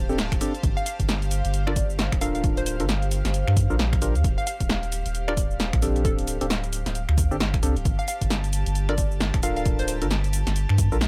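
Moody and late-night, this excerpt of two-step UK garage moves at 133 BPM in G minor with a 60% swing on the sixteenths, its chords cycling from D7sus4 through Gm9 and Ebmaj7. A saturated, thick sub bass sits up front beneath a punchy, tape-warm analog drum machine of finger snaps, hi-hat, shaker and snare, joined at 0.3 seconds by an electronic kick re-recorded in a small room, while a dark, wave-folded organ stab with chorus and digital delay sits in the middle register. A bouncy, detuned square pluck carries the melody from 0.8 to 10.0 seconds. In the background an airy, breathy pad holds sustained chords and an evolving granular cloud pad with built-in reverb adds texture, both pumping with the sidechain alongside the bass in an otherwise dry mix.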